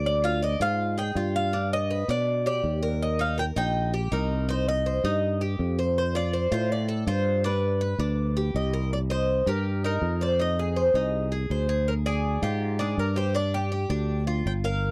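Sultry and danceable, this short excerpt of Cuban son and guajira moves in a straight 4/4 feel. Two Cuban tres parts carry the top: one plays arpeggios, its picked double strings bright and metallic with some octave-doubled strings sitting up front, while the second tres enters at 0.1 seconds with the melody in a warm, metallic picked tone. Beneath them, a sustaining fretless electric bass sounds growly, direct and amped, its analog chorus adding shimmer as it holds the low end throughout. The harmony passes through diminished and major chords before settling into minor sevenths in the second section from 8.9 seconds, closing on a bare G5. The sound is that of a dry, close 1970s-style studio recording touched by light reverb.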